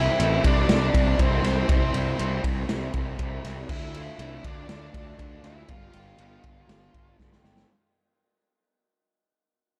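A straight 4/4 pulse drives this hazy, dreamy shoegaze and dream pop fragment, cut from a longer piece and fading out throughout as the chords move from C to Dm to G. A saturated, boomy acoustic kit sits up front in a small pumping room beside a growly, bright fuzz bass, while a double-tracked lo-fi garage guitar plays its riff in the background through overdrive and lush chorus. A dark, distorted octave lead guitar carries the melody through tape echo until 7.2 s, when the drums break into a fill, and a warm studio ambience surrounds the parts.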